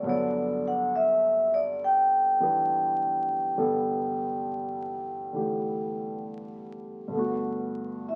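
A ringing, airy vibraphone played with medium mallets and its motor off carries the tender melody up front in this intimate, gently swung jazz ballad, taking a solo at 7.1 seconds, while a natural-sounding grand piano supplies close accompaniment from a Gmaj9 opening, all set in a moderate studio reverb and colored by the crackle of a very old 78 rpm record in a short cut from a longer piece.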